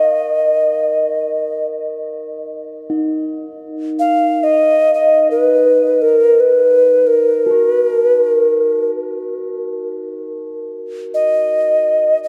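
Unfolding in free time, this haunting, meditative world piece in Eb hirajoshi is cut from a longer work and runs 12.3 seconds. A breathy, clay-toned alto ocarina carries the melody between Bb4 and F5 with vibrato and a crisp attack, close-miked and up front, its line trailed by delay. Beneath it a quartz singing bowl, struck with a wooden striker, rings pure and airy with slow beating, all within a dark production and a wet cathedral reverb that lingers for 5.0 seconds.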